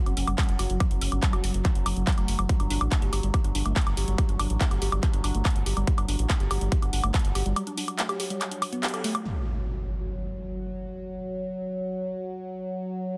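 Hypnotic and driving, this psychedelic trance excerpt layers a detuned, resonant drone with shifting overtones and a dark, woody wave-folded pluck riff, both chorused and pumping, over a round, deep analog bass with tube saturation, a punchy tape-warm kick up front and a techno kit of handclaps, hi-hat and woodblock in a large room, until a break at 7.6 seconds gives way to an electronic impact at 9.3 seconds while the drone sustains to the end.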